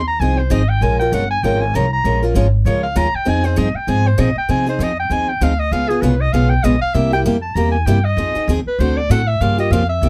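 A fast, swinging four-beat pulse with lilting eighth notes drives this excerpt of acoustic string swing in the jazz manouche tradition, its mood bittersweet yet swinging. The upright bass sets the foundation from the opening moment with a woody, thumpy pizzicato tone on gut strings, sitting dark and up front in its low register. A picked archtop guitar joins at 0.2 s with a crisp, close accompaniment that moves through a minor-key progression, touching on a dominant turn before settling home and heading into a half-diminished chord at 9.4 s. From the very start, a bright clarinet plays a punchy, forceful solo in jazz style over the band, its vibrato giving the line a singing edge. The recording is dry and intimate, with close, detailed microphones placing all three players near the listener.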